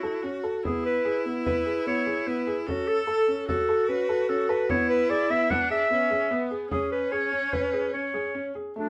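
Moving in an uneven five-beat meter with a straight feel, this restless, hypnotic contemporary chamber piece is cut from a longer work. An up-front, warm clarinet in classical style carries the solo melody, while a single bowed viola, clear and intense with vibrato and a smooth top, adds a second line, and an intimate grand piano, boxy with long sustain and audible action noise, plays arpeggios. Beneath them a deep, large frame drum played close with soft hands stops at 8.3 seconds, and the ensemble sits in a wet studio reverb.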